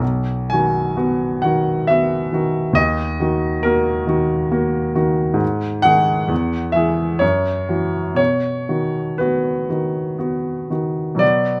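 A clear baby grand piano opens this short, nostalgic and tender cut from a romantic classical nocturne, playing alone in 3/4 at a slow 58-69 BPM with flexible rubato in B major, tuned to A4 = 444 Hz. Its natural tone, short sustain and range from B1 to G#5 sit up front, captured by close, detailed microphones in a dry room. The harmony moves from B through D#m, G#5, E and F#5 before settling back on B at 8.2 seconds.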